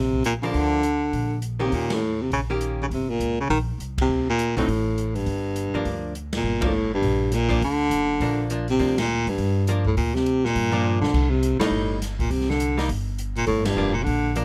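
Small-group swing and bop jazz in G minor at a brisk 204 BPM with a smoky, cool mood, led by a mellow, up-front baritone saxophone carrying the melody with light vibrato over woody, thumpy pizzicato upright bass, a clean, compressed hollow-body archtop guitar comping from 0.4 seconds, and an open drum kit with dark cymbals and a boomy kick, the dry small-room sound punctuated by band accents and a drum fill at 10.8 seconds in this fragment cut from a longer piece.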